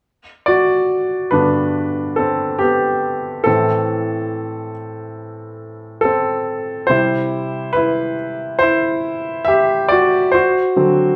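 Bathed in a wet, large studio reverb and captured live in one room, this heartfelt, hopeful pop fragment cut from a longer piece features a clear, polished baby grand piano placed up front, entering at 0.5 seconds and playing alone through a G, Am, C and D7 progression spanning G2 to E5.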